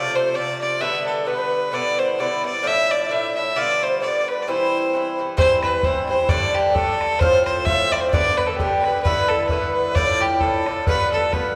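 A clear, nasal fiddle leads this lively, bright Celtic polka, its bowed melody sitting up front with an earthy tone and a smooth top. Beneath it, a baroque flute carries a second line in the background, airy and woody, with tongued, unsteady notes and vibrato. An Irish bouzouki provides picked accompaniment up front, its doubled strings giving a metallic acoustic ring under chords that move through F, G, G6, Dmadd9, G7 and C. At 5.4 seconds, as the same strain begins again, a close, tight, damped bodhran enters in the 2/4 pulse at 131 BPM with a swung feel. The players sit in a reverberant recital hall with a 1.7-second decay, and the passage is cut from a longer piece.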